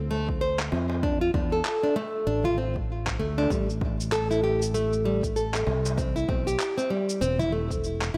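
Light reverb and a studio ambience frame this short cut of organic downtempo, a hypnotic groove at 97 BPM in 4/4 with a 59% swing on the sixteenths, set in A minor and tuned to A4 = 437 Hz. Up front, a bright, fingerpicked nylon-string guitar spins delayed arpeggios over a Dm chord that shifts to Am7 at 3.5 seconds. Beneath it, a direct, warm-toned fretless electric bass holds the low end with a subtle chorus and a sidechain pumping feel. An overdriven, punchy electronic kick arrives at 0.3 seconds, joined by gritty, compressed sampler-style handclaps and shaker that carry their own overdrive. In the background, a small clay-shell darbuka with a natural skin, struck with hard hands, sounds distant, as if placed in a large room, and drops out at 7.5 seconds.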